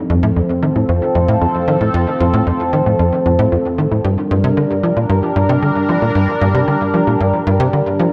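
This short excerpt of ambient, sequencer-driven space music opens at 0.0 seconds with a sweeping, resonant pad holding sustained chords between F3 and Bb4. Its detuned sawtooth and triangle layers, a sine sub octave, a slow attack, a filter swell and a long release give it a bright, evolving glow, thickened with chorus. A moment later, at 0.1 seconds, a tight sequencer bass joins with a punchy riff between F2 and F3. That bass blends sawtooth and square waves with ring modulation and a quick filter pluck, and it is coloured by analog chorus and tape echo. Both parts sit up front over a steady, straight 114 BPM in 4/4, tuned to A4 = 438 Hz, as the harmony moves from F to Gm at 4.0 seconds. A wet plate reverb with a 2.2-second tail and an echo-heavy mix lend the whole passage a luminous, expansive spaciousness.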